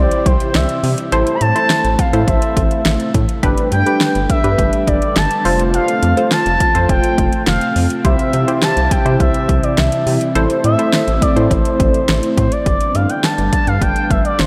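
Drenched in the long tail of a cathedral-like reverb, this dreamy, wistful yet bright synth-pop excerpt in C major moves at 104 BPM through a C, Am, Gadd9, F progression. An overdriven deep house kit with a punchy kick, fat snare and metallic hats sits up front beside a rubbery, hollow square-wave bass. Vintage string-machine cellos hold full, phased chords, a funky polysynth comp plucks along until 12.0 s, and a smooth, mellow lead carries the melody with vibrato, gliding portamento and a diffuse ambient delay.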